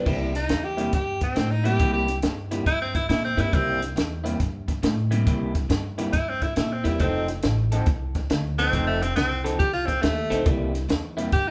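Swaggering and gritty, this electric blues shuffle in C mixolydian struts along at 138 BPM in 4/4 with a heavy swing on the eighth notes, cut from a longer piece. A slightly broken-up, compressed electric guitar through a small old amp picks out the riff with a phaser coloring its tone, while a woody upright bass with steel strings is plucked underneath. A compact cocktail drum kit sits up front with dark cymbals, a high-tuned snare and a punchy kick, its top end rolled off for a smooth, dusky feel. From 0.4 s an edgy tenor saxophone takes the solo, forceful and jazz-styled with scooped notes, placed prominently in the mix. The harmony rests on C7 before moving to F7 at 7.0 s and back to C7 at 10.5 s, all captured as a band playing live in one room with a moderate large studio reverb.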